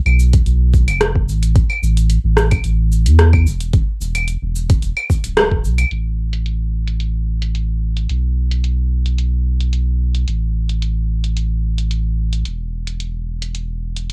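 Organic downtempo at 110 BPM in 4/4 with a light 16th-note swing, this hypnotic excerpt tuned to A4 = 438 Hz sets a round, sine-like sub bass with transformer saturation up front beside a layered deep house kit of cabasa, claves, hi-hat and rim click, low-pass filtered and tape-softened as if re-recorded in a small room, while a gritty, overdriven electronic kick thumps from 0.3 s until 5.6 s, just after a band accent at 5.4 s, the whole piece carrying the warm character of a home cassette recording with light reverb.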